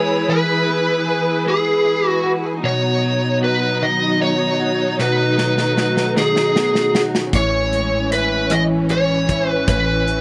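A swaying, heartfelt pop ballad in 6/8 at 51 BPM, this short cut from a longer piece moves from E to B and settles on Amaj7 at 7.3 seconds. Up front, a dark, overdriven lead guitar through a small cranked amp carries the melody between G#4 and D#5, picked with a gritty edge. Beneath it, a clean, compressed electric guitar, double-tracked and picked, fills in the accompaniment, while a lush symphonic string section holds bowed chords with soft attacks and expressive vibrato. A polished acoustic drum kit enters at 5.0 seconds with a fill of hi-hat, rim click, medium-tuned snare and punchy kick, sounding airy and up front. At 7.3 seconds a woody fretless bass arrives on a round, hollow-bodied A1. The sound is dry and intimate, with little reverb or room ambience.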